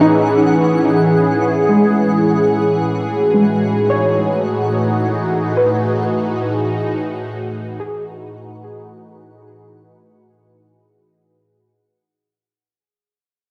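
A straight, unhurried pulse in four sets the pace for this weightless, serene ambient fragment, cut from a longer piece and fading out as it plays. Up front, a detuned sawtooth analog pad holds a single Amaj9 chord in sustained tones with a soft attack, its smooth, bright body carrying chorus and a moving notch. Beneath and around it, a soft, round pluck built from triangle, sine and wave-folded sawtooth tones spells out arpeggios with a fast attack and a dark, decaying filter snap, coloured by ensemble chorus and analog delay. Far in the background, a twinkling granular texture adds a sparkling octave-up shimmer on a single high note, with a slow attack, long release and plate reverb. The pad and the granular layer both stop at 11.7 seconds, leaving the pluck to ring alone until 12.4 seconds. A wet small-room reverb and the hazy grain of a home cassette recording give the whole piece an intimate, dreamlike feel.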